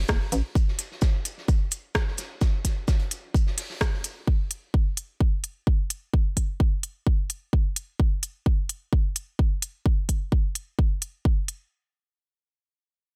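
A punchy, layered electronic kick sits up front from the first moment, together with a house drum kit whose crisp hi-hats and rim clicks ride alongside it in a sparse, hypnotic minimal techno groove with a light swing on the sixteenths. Underneath, an oversized low-tuned acoustic kit adds a dark, gritty layer of saturated hi-hat, shaker and fat snare, heard well back, with the hats and percussion pumping to a sidechain and filtered thin before this kit drops away at 4.2 seconds. A small room reverb lends the drums some air, and the section is cut from a longer piece, ending around 11.7 seconds.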